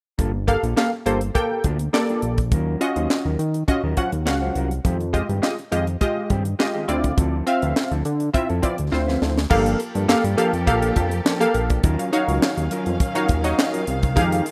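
A punchy, bright polysynth comp sits up front in this danceable early-eighties boogie funk clip in G minor, its detuned sawtooth and wave-folded tones plucked through a filter and coated in chorus from 0.5 seconds. Beneath it, a fat analog bass with a thick, detuned sawtooth sound anchors the low end, and a tight, dry funk drum kit drives a straight 4/4 groove at 103 BPM with a high-tuned snare, bright cymbals, hi-hat, kick and handclaps. A dark, clean electric guitar plays a fingered riff in the background, lightly touched by chorus. The harmony moves through Gm9, Ebm9, Fm9 and Dm9, and a drum fill at 8.9 seconds leads into a new section where a lush, distant string section enters at 9.5 seconds with bowed, vibrato-rich sustained chords. The whole carries a small-room ambience and the rough feel of a home demo, cut from a longer piece.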